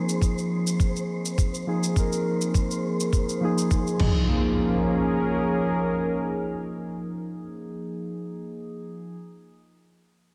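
Soaked in lush hall reverb, this dreamy, earthy and hypnotic organic downtempo fragment in Bb minor at 103 BPM places muted, felt-like synth keys, dark and under a filter sweep, up front beside a smooth, detuned analog pad, both sidechain-pumped, over a thumpy, gritty electronic kick, while an electronic shaker and crash cymbal and a breathy, wind-like tuned noise texture stop by 4.3 seconds, an electronic impact sounds from 4.0 seconds, and the chords move from Ab69 to Bbm7.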